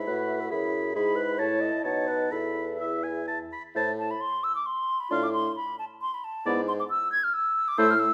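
In a rubato 3/4 at 134 BPM, this lively, cheerful classical-period movement for wind quintet moves from E major into A minor at 3.8 s, cut from a longer piece. An airy, mellow silver concert flute carries the melody up front with vibrato and a soft attack. Beneath it sit a warm oboe second line, a dark, punchy clarinet and a clear French horn in the accompaniment, and a bassoon bass that is present and up front with light vibrato, all set in a moderate recital hall reverb.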